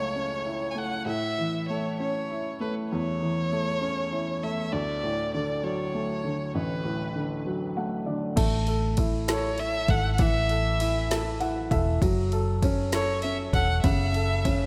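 A warm, bowed solo violin with vibrato carries the melody from the start, sitting up front in a diffuse ambient delay over a woody, polished upright piano in this tender, romantic six-eight pop ballad in A major at 66 BPM, cut from a longer piece. After piano fills near 7.5 seconds, a dark, round, foam-muted electric bass and an electronic deep house drum kit with a punchy kick, woody snare, ride and crash enter at 8.4 seconds, moving from the opening F#m7, A and D changes toward A5 and back to F#m7. The dreamy mix is soaked in a lush hall reverb.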